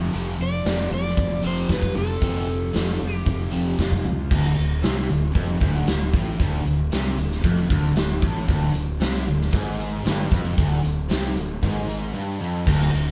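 Huge, punchy arena drums with bright cymbals drive this swaggering, confident classic rock excerpt at 115 BPM. Beneath them sit a warm fuzz bass, two crunchy picked guitar riffs (one run through a phaser) and a thick, distorted, double-tracked guitar, the guitars set back and everything sharing a moderate stone-room reverb, while an overdriven slide guitar plays a brief melody from 0.4 to 3.8 seconds before the harmony shifts from F to D5 at 4.3 seconds.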